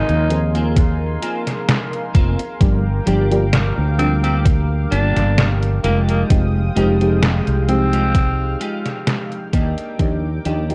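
A raspy, gritty alto saxophone carries the melody until 8.6 seconds in this melancholic, hazy vaporwave fragment, soaked in 12-bit sampler grit and tape echo. Beneath it, a mellow FM electric piano shimmers with phaser and lush chorus, a thick, detuned unison pad holds sustained chords, and a clean, picked electric guitar plays a chorused riff from 0.3 seconds. Up front, a dark, round fretless bass, a detuned 8-bit drum machine on hi-hat and snare, and a thumpy electronic kick drive a gently swung groove through a dry, cassette-tinged mix that fades out from 7.5 seconds.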